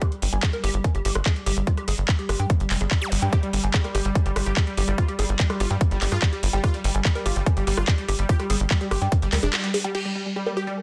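A tight, up-front electronic kick drives a straight 145 BPM pulse, joined by a punchy, tube-saturated sequencer bass and a drum kit of metallic hi-hats, handclaps, rim clicks and crash cymbal, in this intense psychedelic trance excerpt built on a G5 chord. A dark, woody wave-folded pluck riff with chorus and delay pumps against the beat over a pulsing gated texture in the background, a brief electronic zap flickers at 3.0 seconds, and an airy detuned supersaw stab melody with phaser and delay enters at 3.3 seconds. The kick drops out at 9.5 seconds on a band accent, all within a dense, heavily limited master with light reverb.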